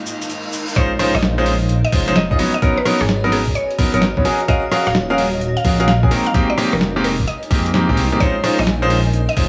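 A dry, gritty hardware recording with vinyl crackle and light digital ambience opens this moody, skippy two-step UK garage excerpt, cut from a longer piece and riding a heavy 16th-note swing. An electronic reverse cymbal rises into the drop at 0.8 s, where an impact lands and rings until 2.6 s. A compressed, tape-warm boom bap kit of cabasa, hi-hat, rim click and a medium-tuned snare is already playing from 0.1 s, and at the drop a thumpy, pitched-down sampler-style kick joins it. At 1.1 s a dark, rumbling detuned saw bass adds deep, beating weight. Up front, a bright, brilliant concert grand plays stabs through a low-pass filter and analog delay, while a woody, round mallet-like synth pluck carries the melody in the background with chorus and delay. Underneath sit two very quiet pads, one ethereal and airy with ensemble chorus and the other a cloudy, evolving granular haze, sustaining minor eleventh chords that move from Fm11 through Bbm11, Abm11 and Ebm11 before returning.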